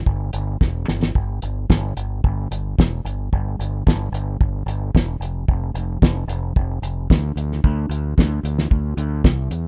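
A cloth-damped, thuddy drum kit with a fat snare, tight kick and rolled-off top sits up front, throwing in a fill at 0.6 seconds, beside a bright, growling fingered electric bass with overdrive, in this carefree, jangly indie rock cut at 111 BPM, heard dry in a rough home demo mix.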